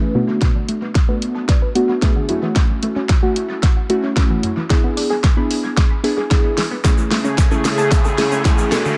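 Bittersweet and energetic, this dance-pop excerpt at 112 BPM builds over Bm7, F#m7, E7 and Amaj7 chords, with glassy, pumping digital keys and a detuned sawtooth unison pluck tracing arpeggios through delay in the background, a punchy, up-front pop drum kit with a fat snare driving a drum fill from 0.4 seconds, a lush supersaw pad and a grainy egg shaker joining at 6.8 seconds, and a riser arriving at 8.0 seconds amid light reverb and an echo-heavy digital ambience.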